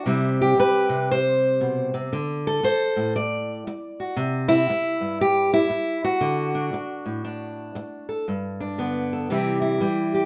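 Folk fingerstyle for a single steel-string acoustic guitar, this peaceful, pastoral piece moves at 117 BPM in 4/4 with a gentle swing on the eighth notes. The fingerpicked guitar plays alone for the whole 10.3 seconds, ranging from G2 up to D5 and sitting up front in the sound. Its tone is bright, with the crisp ring of fresh strings and a finger squeak that adds a close, human touch. The opening passage cycles through C, D7 with the third omitted, C and D. A short new phrase arrives at 8.3 seconds on Gadd9 before settling onto C. Light reverb gives the guitar a soft sense of space, and this brief cut from a longer piece has an unhurried, open-air calm.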